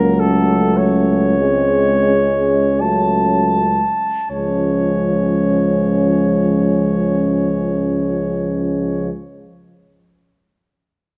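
In a slow, rubato 3/4 at 39-54 BPM that slows through its first 4.3 seconds, this serene, hymn-like classical passage for brass band in Db major is cut from a longer piece. An up-front, roomy flugelhorn carries the melody over a tight French horn section in the background. Beneath them, a mellow euphonium with vibrato and a soft-attack trombone with light vibrato accompany, and a punchy, distant tuba holds Db2 in the bass, all within a moderate scoring-stage reverb as the harmony moves from Gbm/Db to Db at 4.3 seconds.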